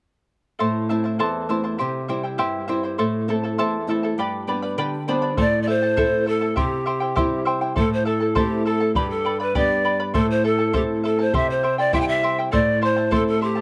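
Dry and open-air, with a slapback echo on the strings and pipes, this earthy, wistful Andean folk excerpt in A minor moves at 101 BPM in a straight 2/4, as a shimmering double-strung charango and a fingerpicked nylon-string guitar cycle through Am, C and G from 0.6 seconds, the guitar adding a short fill before breathy cane pan pipes with vibrato and a soft chiff take the melody at 5.4 seconds over a round, close bombo.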